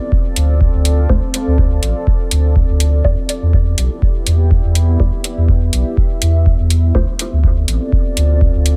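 A steady dub techno pulse, lightly swung on the sixteenths, carries this short, hazy cut from a longer track. A tape-warmed analog kick and metallic hats sit up front, the kick arriving at 0.1 seconds and the hats at 0.4 seconds. A soft, round sub bass enters alongside the hats and pumps with a sidechain. Beneath it all, a dark, moody ambient pad holds full-bodied sustained chords through chorus and its own reverb, drifting from Dm7 to Em7 and back while breathing with the same sidechain pump. From 1.1 to 7.1 seconds, a muted, mellow chord stab with a short filtered pluck flickers through phaser and dub echo as a filter sweeps across it. The overall sound is close and deep, with little room reverb.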